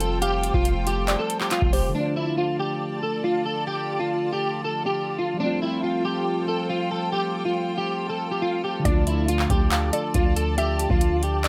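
Set in a digital ambience, this brooding, hard-hitting half-time trap excerpt in D minor at 139 BPM puts a dark, slightly broken-up electric guitar melody with ensemble chorus up front over muted, felt-like synth keys with chorus and distant, floating sul tasto strings holding soft chords. Meanwhile a booming analog drum machine with a deep kick, metallic hats and handclaps drops out at 1.8 seconds, a boomy sine-like 808 bass and a woody, mallet-like FM pluck with tape echo in the background follow at 1.9 seconds, and all three return at 8.9 seconds.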